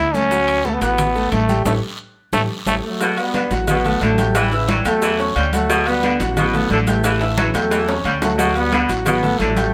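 A straight 4/4 salsa groove drives this sunny, festive cut from a longer piece, with woody, thumpy pizzicato upright bass under an intimate concert grand piano full of audible action noise and long sustain. Bright congas, tight high-tuned bongos and cowbell, ringing timbales and agogo bells, raspy guiro and grainy maracas fill out the percussion in moderate studio reverb. A gritty, growling solo trombone with vibrato leads up front through a band accent, giving way at 2.8 seconds to a smooth-topped trombone section, joined at 3.0 seconds by a clear, vintage saxophone section on a second line, while drum fills mark the change of section and return later.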